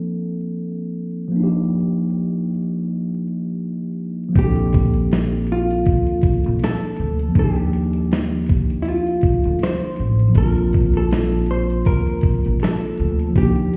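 A dusty, sampler-style drum kit stands out most, its gritty, compressed hi-hat, thumpy kick and medium-tuned snare sitting up front in this dreamy, mellow lo-fi hip hop excerpt at 80 BPM with a 16th-note swing. The piece opens with a mellow tine electric piano alone, clean yet cassette-tinged and low-pass filtered, voicing Bbmaj7 and Ebmaj7 chords in Bb major under a filter sweep that runs through the first 4.4 seconds. At 4.4 seconds the drums arrive together with a woody, dark pizzicato upright bass on gut strings and a picked hollow-body jazz guitar carrying the melody. The guitar is clean and compressed, its dark, filtered tone sitting lower in the mix than the piano and bass. The whole sound seems heard muffled through a wall, with vinyl crackle and a stone-room reverb adding a hazy, lived-in feel as the chords alternate between Bbmaj7 and Ebmaj7.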